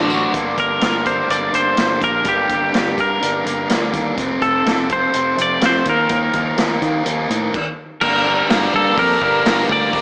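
This cool, moody indie rock excerpt opens on a thick, bright fuzz guitar riff with slapback echo, a growly picked electric bass and a brief burst of biting overdriven guitar with analog chorus; a vintage acoustic drum kit with a punchy kick and rolled-off top joins at 0.3 seconds, and a clean, compressed, twangy guitar carries the up-front melody from 0.6 seconds, set in a lush hall reverb with a big arena sound, until a short stop at 7.5 seconds leads into a new section where the overdriven guitar riff returns.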